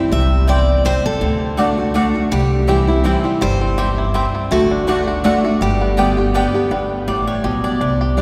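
A cavernous cathedral reverb bathes this rustic, virtuosic bluegrass waltz, cut from a longer piece, at a lively 164 BPM in 3/4 with a light swing in G major, moving through C and D before settling on G. A growly pizzicato upright bass sits up front beside a full-bodied dreadnought guitar picking bright accompaniment, while a warm concert guitar carries the picked melody until 6.3 seconds and a twangy, percussive fingerpicked banjo joins the tune at 2.3 seconds. A woody, double-strung mandolin adds stabs throughout before taking a short solo from 6.7 seconds.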